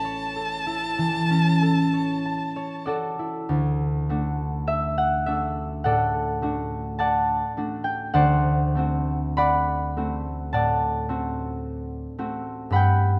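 A single bowed violin and the concert harp begin this tender, serene romantic duo together, the violin's rich, focused tone and vibrato sitting up front as it carries the melody around A5 before falling silent at 2.9 seconds. The concert harp supplies the accompaniment throughout, fingerpicked and ringing, reaching from A1 up to B5 and sounding a little louder than the violin. The harp carries on alone after the violin stops, holding the music together until the clip ends at 13.2 seconds. The piece sits in D major at a slow 47 to 55 BPM in 4/4, with a rubato feel and tuning at A4 = 441 Hz. Its harmony moves from A to D and then to D7, and moderate concert hall reverb gives both instruments a spacious glow in this cut from a longer classical work.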